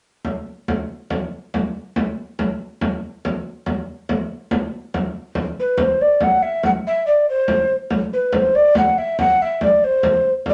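Medieval dance in a straight 6/8 with an ancient, rustic air, where a deep, hard-handed frame drum sets the pulse alone from 0.2 seconds until a mellow, hollow tenor recorder with airy chiff and vibrato enters up front at 5.6 seconds to carry the melody, all in a short cut from a longer piece bathed in a wet studio reverb.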